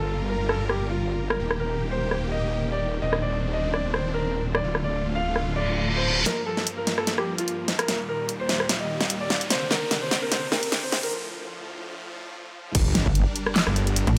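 A lightly reverberant mix opens this aggressive, menacing fragment of heavy wobble dubstep, with a half-time swing where a warm grand piano melody with digital delay rides over huge, bright supersaw chords carrying vintage sampler grit and sidechain pumping. A saturated, detuned wobble bass sits up front alongside a big-room dance drum kit with a huge snare in a small room, while a reverse cymbal, riser and sub drop hover in the background through a build-up and a break. At 12.7 seconds the drop lands with a tape-toned electronic kick, the wobble bass returns, and from 13.1 seconds a heavy, pulsing pluck wobble bass joins in.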